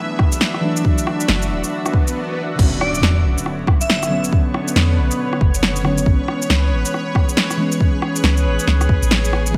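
Nocturnal and melancholic, this future garage excerpt moves in a swung 4/4 over a hazy bed of vinyl crackle and light digital ambience. Muted, felt-like synth keys and a cloudy, granular pad open together, both pumping against the kick, the keys trailing dub echo and chorus while the pad blurs through its own reverb. A reversed, detuned texture glimmers in the background, and the deep, tape-warm kick and deep house kit, with its fat snare, rim click, shaker and crash, sit up front in a small room from 0.2 seconds. A soft, round 808-style bass joins at 1.3 seconds, dark and tube-saturated, pumping in time with the kick. An electronic swell and brief break give way to an impact at 2.6 seconds as the harmony shifts from Dadd9 to Bmadd9, and just after, an airy, bright lead with vibrato, phaser and dub echo floats briefly over the new chord before the harmony settles on Amaj7.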